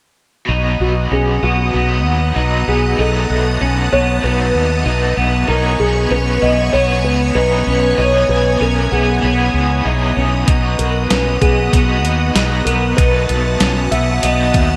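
A straight 4/4 pulse at 96 BPM carries this floating, blissful dream pop piece in B major, tuned to A4 = 438 Hz. A round, dark fretless bass anchors chords moving from B through B7 to E6/B, while shimmering sawtooth string-machine violins hold sustained harmony, a clean semi-hollow guitar picks arpeggios through analog chorus and delay, and a raw, overdriven garage guitar adds accompaniment with tremolo and chorus. A felt-muted upright piano carries the melody from 0.8 seconds, its intimate tone and audible action noise softened by ensemble chorus and delay, and at 10.5 seconds a crisp 8-bit drum machine arrives with thumpy kick, medium-tuned snare and hi-hat in gated reverb, the mix sitting in a lush hall with bright 1980s-style digital production.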